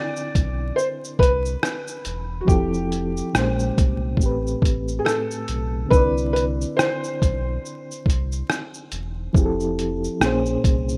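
A rough home-demo sound with vinyl crackle and light reverb frames this brief excerpt of mellow, nostalgic lo-fi hip hop in C major, moving at 70 BPM in 4/4 with a lazy 16th-note swing. A felt-muted upright piano carries the melody up front, its soft, intimate tone dulled by a low-pass filter and trailed by tape echo. Beneath it, a reedy electric piano plays the accompaniment with a fast tremolo, its clean tone heard through built-in speakers and also softened by a low-pass filter. The sampler-style drum kit arrives at 0.2 seconds, compressed, pitched down and muffled, with a thumpy kick, hi-hat, rim click and shaker that sound re-recorded in a small room. A deep sine sub bass doubled at the octave joins at 0.4 seconds, sustaining full, fast-attack notes under chords that drift from Cmaj9 through Fmaj9, Bbm9 and Am9 before circling back.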